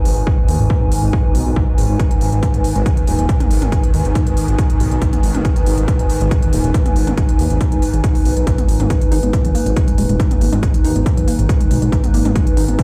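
Heard through a big sound system in a bare room with a large studio reverb, this intense, hypnotic cut of driving peak-time techno pounds along at 139 BPM in G# minor, its heavy, tape-warm electronic kick up front over smooth hi-hats and toms from a layered techno kit. A thick, menacing detuned saw bass pumps against the kick, while a swarming, granular drone sits in the background alongside a nostalgic, warbling lo-fi pad, both breathing with sidechain pumping under their own built-in reverb. At 8.9 seconds a dark, dusty pluck riff joins in the background, overdriven and chorused with dub echo trailing each short note.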